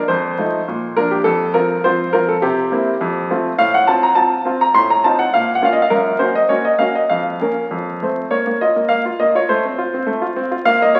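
A solo baby grand piano opens at once in a classical-period sonatina, heard through the crackle of a very old 78 rpm record. The piano sits up front with a clear, intimate tone, short sustain and audible action noise, while a wet recital hall reverb surrounds it. In a steady, straight duple metre, the playing is elegant yet dramatic, ranging from F2 up to C6. The harmony darkens into a minor colour as the opening phrase unfolds, then a new section begins at 8.3 s. The piano plays on until the fragment is cut off at 11.0 s, mid-flow in a longer piece.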